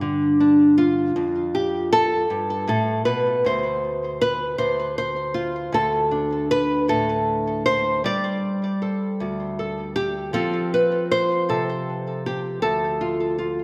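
A lone nylon-string guitar opens the recording, fingerpicked up front with a dark, small, acoustic tone that sets a wistful, haunting folk mood. The piece moves slowly in 6/8 at 52 beats per minute, counted in dotted quarters, with a straight feel, and the guitar covers a span from D2 to D5. A subtle chorus and delay shade the guitar, and a lush hall reverb with a 1.9-second decay blends with a small room ambience, leaving the whole mix dreamy and soaked. The harmony drifts from G5 to F, reaches a chordless passage at 3.4 seconds, then moves through D5, Gsus2 and F before settling on D minor at 12.6 seconds. This brief passage, cut from a longer piece, stays as a single solo statement until it ends at 13.6 seconds.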